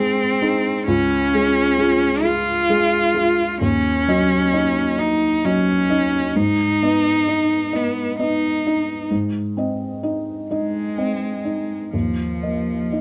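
A light reverb surrounds this intimate recording, in which a felt-muted upright piano and a single bowed cello both sit up front. The piece is melancholic and fragile neoclassical music for piano and strings, moving at a slow 44 BPM in dotted quarters in 6/8 with a rubato feel, and this excerpt is cut from a longer piece. The piano carries the accompaniment across a range from Db2 to Eb5, its tone soft and mellow. The cello plays a second line between F3 and F4 with a rich, focused sound, audible vibrato and a smooth top. Both instruments play throughout the 13 seconds, passing through a harmony of Ab, Db, Ebm7, Abm, a return to Ab and a final Ebsus2.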